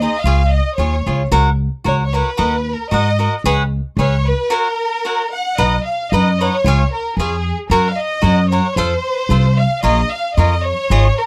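Mexican folk in the mariachi style, this short piece from a longer work moves at 112 BPM in a straight 2/4, with a romantic yet festive mood in F# major, tuned slightly low to A4 = 436 Hz. A rich studio violin section carries the melody between G#4 and F#5, its bowed ensemble tone focused and smooth at the top, colored by vibrato. Beneath it, a bright, crisp picked cavaquinho supplies the accompaniment, while a woody pizzicato upright bass with steel strings anchors the low end from G#1 to G#2. All three parts play from the start, sitting up front in a close, detailed recording with little reverb. The harmony moves through chords such as D#m, C#7sus4 and C#7 before a second section begins at 5.6 seconds, turning to B, F and A#m, and the violins hold on until 11.3 seconds.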